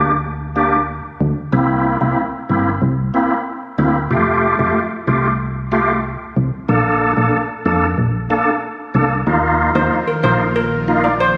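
Dancehall with a tough, bouncy mood, built on a reedy tonewheel organ with key click, chorus vibrato and fast rotary speaker, over a punchy, round FM bass that sits dark and up front as the chords move from Gm through C7 and Fadd9 to Bbmaj7. At 9.3 seconds a breathy pad with chorus settles onto Ebsus2, and at 9.8 seconds a shimmering, metallic steel pan played with hard rubber sticks carries the melody through a digital delay. This short cut from a longer piece sounds captured on a phone in a room, with a lush hall reverb and lossy compression artefacts.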